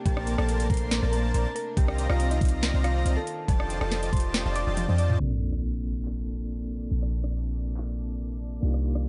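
Future bass at 140 BPM in a half-time 4/4 feel, this euphoric, bright cut from a longer piece sits in Bb major, moving from Bbmaj9 through Cm11 and F13 back to Bbmaj9. The opening drop layers a round, tine-like synth pluck melody with chorus, delay and a cassette-tape tint, a huge, detuned supersaw riff, and a soft, airy lead of high arpeggios in the background, all breathing with sidechain pumping. Underneath, a deep, boomy 808-style bass with tube saturation sits up front beside a knocking, layered kick, while a trap kit adds a sharp snare, metallic hats, handclaps, rim clicks and toms with overdrive. The kick drops out for a drum fill at 4.8 seconds, and at 5.2 seconds an impact and a very quiet sub drop usher in a new section where a barky, gritty tine electric piano with fast tremolo and delay takes over the accompaniment. Throughout, an earthy, low-pass filtered chamber string section holds sustained chords in the background, and the dry mix keeps the top end rolled off.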